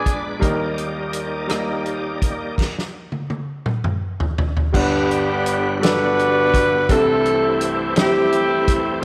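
Soulful and hopeful, this slow gospel passage in a straight 6/8 sets a clear grand piano under a full, shouting tonewheel organ, lightly overdriven with key click, chorus vibrato and a slow rotary speaker, while a natural country drum kit with a fat snare and punchy kick sits up front. The bright saxophone section, played ensemble-style with light vibrato and a soft jazz attack, sounds only briefly at the start before returning at 4.7 seconds to carry the melody over Gmaj7 and C6 chords. A drum fill from 2.6 seconds bridges into that entry, and a moderate echo-chamber reverb surrounds the cut-off fragment.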